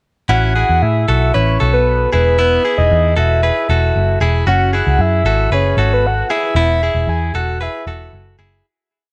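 Jangly indie pop in E major at 115 BPM, bright and breezy, where a mellow octave-layered synth lead with chorus and vibrato carries a motif-based melody over a twangy, direct-recorded clean electric guitar ringing out picked arpeggios doubled in thirds and a dark, foam-muted picked bass playing a round, melodic line, moving through Aadd9, E and F#madd9 in light reverb before fading out from 6.6 to 8.6 seconds.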